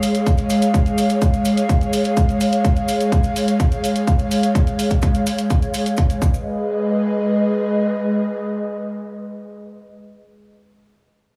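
An airy, breathy pad sits up front in this bittersweet, dreamy progressive house excerpt, its soft, detuned chords carrying chorus and sidechain pumping through to 10.0 seconds. A tape-warm hi-hat and grainy maracas tucked in the background play from the outset, and a punchy electronic kick joins them at 0.3 seconds, with a light small-room ambience around them. By 6.4 seconds the percussion has dropped away, leaving the pad alone as the harmony moves to a G-sharp minor chord.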